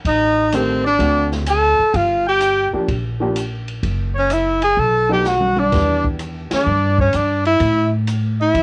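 A clear, up-front tenor saxophone carries the melody with soft-attack vibrato and scooped notes in this relaxed, playful small-group swing excerpt at 127 BPM, joined by a bright, punchy trumpet in the background, a thumpy, woody pizzicato upright bass with tube saturation, an intimate baby grand piano with audible action noise that plays from 0.5 to 7.1 seconds, and a small-room drum kit with dark cymbals and a boomy kick that adds a fill at 5.2 seconds before a band accent at 6.4 seconds, all with a cassette home-recording character and moderate reverb.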